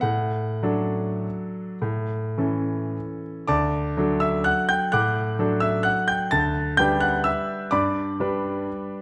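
Sparkling and graceful, this classical piano waltz in D major moves in a flexible 3/4, its rubato pulse drifting between 97 and 134 BPM. A solo concert grand carries the whole passage, spanning from deep bass notes up into a brilliant high register, with a natural, up-front presence. The harmony opens on a D chord over A, moving to A before a new section begins at 3.5 s on D. From there it shifts to G over D at 6.3 s, keeping the music anchored in its home key. A moderate recital hall reverb gives the instrument a gentle sense of space around it. This short passage of about nine seconds is cut from a longer piece.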